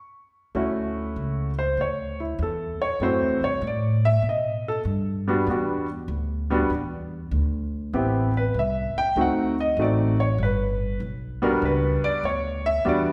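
A reverberant recital hall wraps this short jazz piano trio passage, cut from a longer piece, in a lingering 1.5-second tail that gives it the spacious feel of a church or concert hall. After a brief silence, the concert grand piano and upright bass enter together at 0.5 seconds and carry on to 13.1 seconds, swinging gently at 98 BPM in 4/4 in D major. The piano takes the melody in a sophisticated, intimate voice, sitting up front with a natural tone, deep low end and the audible clatter of its action. Beneath it, the plucked upright bass is woody and growly, its steel strings giving the low line a close, present bite. The harmony moves from Dmaj9 through F#m7b5, B5, Em7, Am7 and D7b9 before settling on Gmaj7, lending the passage a warm, sophisticated mood.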